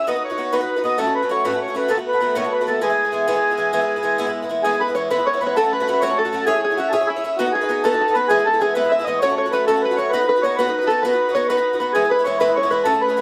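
A mellow, reedy accordion carries the melody up front from the start, over a shimmering, octave-doubled picked twelve-string acoustic guitar in this cheerful, bright Celtic folk tune in E major, moving at 131 BPM in 12/8. At 4.6 s, as the opening phrase repeats, a plunky, twangy fingerpicked open-back banjo enters in the background with a second line. The accordion has plate reverb, and the whole ensemble sits in a small, lively room in this short excerpt from a longer piece.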